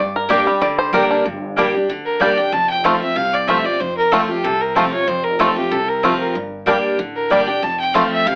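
Haunting and rustic, this brief cut from a longer bluegrass piece in G minor races along at 188 BPM in a straight 4/4, moving between G minor and F. A twangy, percussive five-string banjo, played with fingerpicks, leads up front with a solo spot that runs to 1.3 seconds. Beside it, a bright, full-bodied dreadnought guitar picks the accompaniment, while a woody mandolin with its doubled strings adds stabs. A lone fiddle enters at 2.1 seconds, bowed with light vibrato, its tone intense and boxy as it carries the melody up front. In the background, a dark, growly pizzicato upright bass gives a thumpy footing, and the whole mix sits in moderate studio reverb with an AM radio character.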